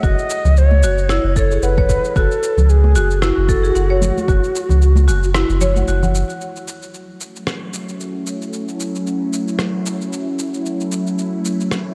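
A dreamy, reverb-soaked mix opens this meditative, hypnotic organic downtempo excerpt at 113 BPM in F# dorian, where a breathy, gritty cedar flute melody and dark marimba arpeggios with tape echo float over a round, up-front sub bass, an overdriven deep kick, a gritty shaker and rim click, and soft, dry congas and bongos, before a break at 5.3 seconds gives way at 6.4 seconds to an F#m7 chord, where a tense, detuned, string-like drone entering at 7.1 seconds carries a filter sweep.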